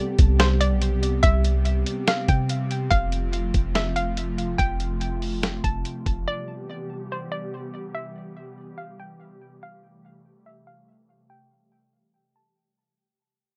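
Dreamy and blissful, this atmospheric cloud-rap excerpt floats on a half-time hip hop feel, with a hollow, nasal square pluck carrying the melody through chorus, tape echo and a low-pass filter over an airy, breathy pad that pumps gently against the beat. Up front, a compressed, muffled, pitched-down sampler-style drum kit with a thumpy kick and medium-tuned snare joins a deep, round 808-style bass at 0.2 s, and both drop away near 6.3 s, leaving the mellow pad and bouncy pluck to drift on alone. A filter sweep and a fade-out run across the entire passage, softened by a light reverb.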